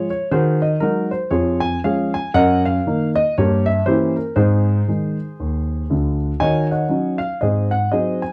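Stride jazz piano at 118 BPM in 4/4 with a light swing, this brief cut from a longer piece feels playful and swinging, tuned slightly below standard pitch. A lone grand piano sits up front, its dark, mellow, smooth, vintage tone spanning from deep bass to high treble as it moves through chords like Gdim7, Ab and G#7 across about 8.3 seconds. A moderate studio reverb and a dark, warm production round out the sound.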